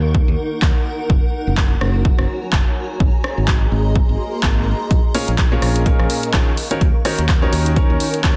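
A swung groove drives this energetic, soulful piano house clip, with a punchy, tape-warm analog kick up front and an overdriven house kit of handclaps, hi-hat and rim click entering at 0.6 seconds. A bright, growly fingered electric bass and a cloudy, detuned granular pad with its own reverb both pump against the kick over a minor progression, while a background electronic swell enters at 4.2 seconds. At 5.1 seconds a clear, smooth vintage grand piano arrives with a delayed riff, all inside a dense, heavily limited modern master with little reverb.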